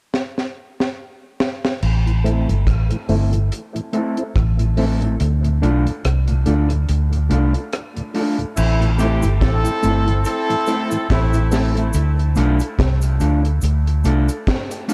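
This dub reggae excerpt opens with a drum fill at 0.1 s on a dry kit with a high-tuned snare and tight kick, using crash, hi-hat, rim click and snare, with a rolled-off top. At 1.8 s a foam-muted, round fingered electric bass arrives up front on A minor. A clean electric guitar with spring reverb, low-pass filter and dub echo joins it, along with a mellow tonewheel organ set back in the mix, coloured by chorus vibrato, a slow rotary speaker, filtering and dub echo, while a filter sweep runs through this stretch and the kick drops out for a while. The harmony moves between A minor and D minor at a meditative 71 BPM in 4/4 with a swung sixteenth feel. At 8.6 s a loose horn section with vibrato and a smooth top plays a short second line through dub echo, and a close, quiet cabasa adds a tube-shaker texture in the background. The production is dark and deep, with light reverb and a small room ambience.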